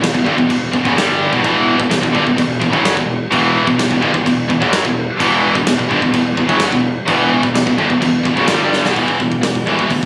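A short, relentless heavy metal passage cut from a longer piece opens with three distorted electric guitars playing a riff together in E minor at 127 BPM in a straight 4/4, two of them high-gain and one tight, all picked and bright, sitting in the background of the mix. Underneath, a growling fingered electric bass adds overdriven weight in the low register, heard both direct and through an amp. Up front, a big acoustic rock drum kit drives the music with a punchy kick, a medium-tuned snare, hi-hat and glittering crash cymbals, its natural sound carrying the ring of a large room. A drum fill at 8.7 seconds leads into a new section at 9.0 seconds, where the harmony moves from Em to an E5 power chord and one of the high-gain guitars drops out. The overall sound is heavy and compressed, with light small-room reverb and the character of a phone capture in the room.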